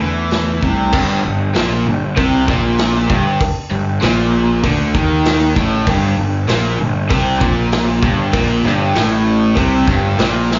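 Gritty, driving classic rock in G minor at 97 BPM, cut from a longer piece, where a shimmering, octave-doubled twelve-string acoustic guitar rings briefly over the opening D5 chord before dropping out at 0.9 seconds. The riff sits on a bright distorted electric guitar with slapback echo and a hollow-bodied overdriven semi-hollow guitar with phaser, under an up-front fuzz bass, while a vintage drum kit with dark cymbals and a tight kick arrives at 0.3 seconds. At 0.9 seconds, on the shift to G minor, a compressed, double-tracked overdriven electric guitar and a metallic cowbell join, all heard as a live club gig through the venue's PA with a muffled, rolled-off top.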